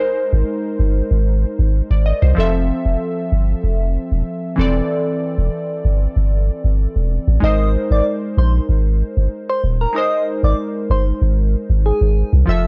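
A straight 4/4 afrobeats groove at 95 BPM sets a sunny, breezy mood in this short cut from a longer piece, as glassy digital keys with chorus and a filter sweep open at 0.0 s over Abadd9, Fmaj7 and C6/E. A deep, punchy sub bass with a pitch-drop attack enters at 0.3 s and sits prominently up front. At 7.4 s, a round, gentle FM lead with a keys-like, chorused tone brings in the melody as the harmony returns to Abadd9, all captured in a dry, gritty cassette-tape sound.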